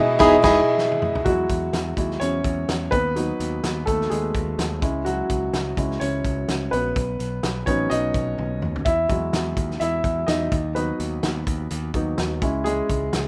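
A rough home-demo sound with a moderate small-room reverb frames this hopeful, uplifting piano-driven pop clip in E major at 126 BPM, with a light swing on the sixteenths. It opens on a band accent: a very quiet, lush bowed string section holds a chord until 1.2 seconds, while a picked, plugged-in steel-string acoustic guitar with finger squeak adds a brief riff. A fat-snared, gritty indie drum kit with dark cymbals and a bright, direct electric bass carry on beneath the clear, up-front baby grand, which fills into a solo from 1.3 seconds over chords moving from Eadd9 through B/D# and C#m, and the drums add another fill around 8.4 seconds.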